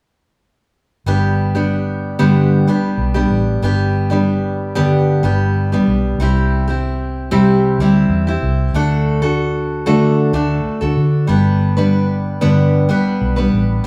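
This pop piece has a sunny, easy-going mood, moving at 94 BPM in a straight 4/4 in G major. A picked steel-string acoustic guitar carries the accompaniment, its full-bodied jumbo tone sitting up front in the mix. Beneath it, a vintage electric bass played with the fingers adds a dark, round, foam-muted low end. Both parts enter together at 1.1 s and play through one section, with the harmony moving from G to C at 6.2 s, then to D, before settling back on G at 11.3 s. The two players sound as though they are together in one large studio, wrapped in a generous reverb, and the passage is cut from a longer piece.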